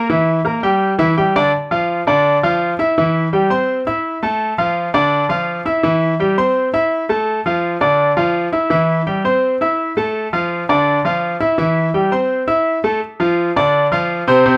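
A moderate large-studio reverb with a 0.8-second decay surrounds a solo grand piano that sits up front and present, its brilliant, polished tone carrying audible action noise and long sustain that make the sound feel intimate. This short cut from a longer Latin piece moves at 167 BPM in a straight 4/4, set in D minor with the instrument tuned to A4 = 435 Hz. The mood is passionate and fiery, with the piano spanning C3 to E6 as the only voice from start to finish. A brief opening passes through Edim and Dsus24 before the main stretch begins at 1.5 seconds, alternating steadily between Dm and C. At 13.0 seconds a closing passage settles on Dm, carrying through to the end at 14.6 seconds.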